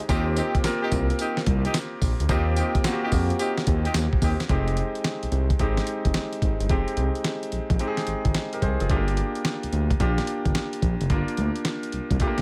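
Dry and close, this punchy, bouncy new jack swing R&B excerpt at 109 BPM in F dorian, swung on the sixteenths, rides a gritty, compressed sampler-style drum kit with a thumpy kick, fat snare, hi-hat and tambourine, under a smooth, saturated sawtooth-and-triangle synth bass that glides with portamento and vibrato and a brilliant, polished concert grand piano, while a clear jazz-style horn section adds delayed stabs over an Eb6 chord until 4.4 seconds, after which the harmony moves to Fm7 at 4.5 seconds and Gm7 at 8.9 seconds.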